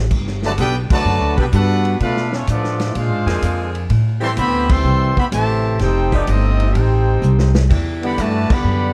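A woody, thumpy pizzicato upright bass opens this joyful, brassy big band swing excerpt in G major at 126 BPM, joined at once by a vintage drum kit with dark cymbals and a punchy kick, then by a bright, distant trumpet section carrying the melody and a soft-attack trombone section on the second line, while an edgy, close-miked saxophone section holds sustained chords in the background, the whole band hitting accents at 0.8 and 4.6 seconds and the drums playing a fill at 7.2 seconds over rich ninth and seventh chords in a dry room.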